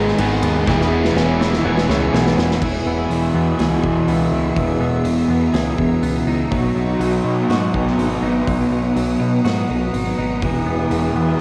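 Shoegaze and dream pop rock in E lydian at 123 BPM, this blissful, dreamy passage is cut from a longer piece. A crunchy overdriven guitar riff sits up front with reverse reverb. Behind it come a doubled overdriven guitar that drops out at 2.6 s, a dark fuzz guitar with analog chorus, twangy clean arpeggios through analog delay, and an icy, crystalline pad holding chorused chords. A growling picked bass and a big rock kit with punchy kick and bright cymbals drive it, with a drum fill from 0.7 s into the shift from G#m and E6 toward E, Bmaj7 and Emaj7, all steeped in the haze of a home cassette recording.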